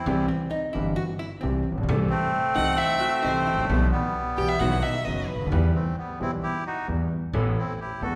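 A reedy, bright bandoneon carries the melody up front in this sultry, dramatic tango fragment in E harmonic minor, moving at 132 BPM in 4/4 with a rubato feel. A deep-voiced concert grand piano accompanies it, a woody, thumpy pizzicato upright bass anchors the low end, and a dark, clean hollow-body electric guitar adds a quiet second line. A close, expressive bowed violin with vibrato and portamento joins at 2.6 seconds, and both it and the guitar fall away at 5.6 seconds, all set in the lush reverb of a recital hall.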